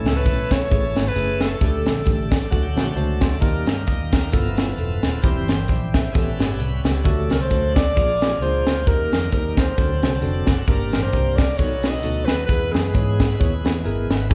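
Set in a moderate recital-hall reverb, this fervent, solemn uptempo gospel excerpt swings in 4/4 over a crisp fusion kit with a high-tuned snare and punchy kick sitting up front, a dark, round fingered electric bass, and a clean tine electric piano. A bright tonewheel organ, lightly overdriven through a fast rotary speaker, holds shouting sustained chords and adds fills, with the electric piano joining it for a fill at 2.1 seconds. A breathy, whispered alto saxophone carries an intimate solo melody, dropping out at 2.8 seconds and returning at 7.3 seconds.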